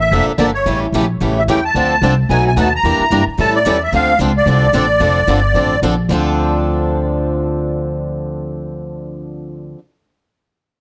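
The recording sounds dry and gritty, with transformer saturation, a light reverb and a dulled top end that stops short of 10.9 kHz, in this short cut from a longer piece of jazz manouche, the acoustic string swing style, played at a brisk 221 BPM in 4/4 with a swung eighth-note feel in D minor. The mood is bittersweet and virtuosic. Up front, a reedy musette accordion with shimmering musette tuning carries the melody between C#5 and Bb5, its smooth, dark tone touched by tape echo until it drops out at 5.8 seconds. Beneath it, a pizzicato upright bass on steel strings sounds woody, growly and thumpy, holding the low end through to 9.7 seconds. Two picked acoustic guitars supply the accompaniment: a bright, boxy swing-style guitar with fresh strings sits up front, while a parlour steel-string guitar adds a quieter, bright layer. The harmony moves from Bbmaj7 and A7 through Dm7, B7, Em7b5 and A7 back to Dm7, with a second section arriving at 6.1 seconds.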